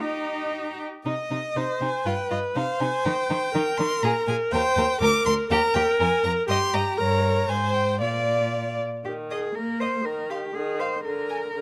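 Close, detailed microphones and a light reverb frame this spirited, cheerful fragment of a quick classical-period string quartet movement in 2/4. The first violin carries the bowed melody high above the second violin's inner line, both rich and focused with vibrato, while the up-front viola supplies accompaniment and the cello anchors the bass with a smooth, even tone. The opening material returns at 9.0 s, and the violins stop at 11.4 s, just before the viola and cello finish at 11.6 s.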